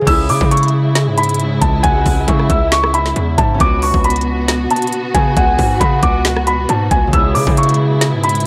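A half-time trap groove drives this menacing, dark hip hop clip, with a knocking kick, woody snare, crisp hi-hats, rim clicks and a crash cymbal sitting up front in the mix. Beneath it, a distorted 808-style bass hits hard with a saturated, noise-layered growl that decays after each fast attack. The lead melody comes from a felt-muted upright piano, soft and intimate with thick felt dulling its hammers, placed high in its register and trailed by analog delay. A fingerpicked concert harp rings through the accompaniment while a distant, bowed string section holds lush sustained chords, moving from C#m to Bm/C# and back. From 1.8 to 6.7 seconds, a round, octave-layered synth lead adds a second line, shimmering through chorus, phaser and delay. The whole cut has a dry, gritty hardware character with little reverb.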